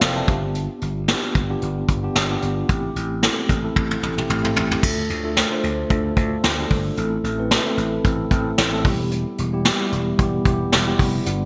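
Bright digital production with a lush hall reverb frames this glossy, romantic 1980s-style pop excerpt at 112 BPM with a light 16th-note swing, where a mellow, clean tine electric piano sits up front over a growly, punchy slap bass and a brushed drum kit with dark cymbals, a tight kick and gated reverb, the drums playing a fill from 3.8 to 4.8 seconds as the chords move from G7 and Am7 to Dm, Am and Em.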